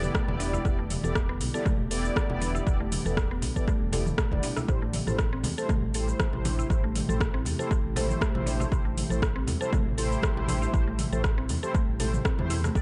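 Driving and hypnotic, this afro house excerpt moves at 119 BPM in 4/4 with a light sixteenth-note swing, sitting in A minor as the harmony shifts from Em7 to Am7 at 4.7 seconds. A deep, tape-warmed electronic kick sits up front, joined by a deep house kit of metallic, overdriven hi-hats, rim clicks, shaker and toms treated with tape echo and re-recorded in a large room, while close, dry congas ring very quietly underneath. A smooth, dark gliding synth bass with portamento and vibrato pumps against the kick through tube saturation. Above it, a woody, round FM pluck plays arpeggios through chorus and analog delay, and a mellow, detuned synth brass fires stabs with a filter sweep, chorus and tape echo, both also pumping with the kick. A very quiet, ethereal pad holds sustained chords on a slow attack and long release, and the whole mix is echo-heavy with light reverb and a soft, rolled-off top end.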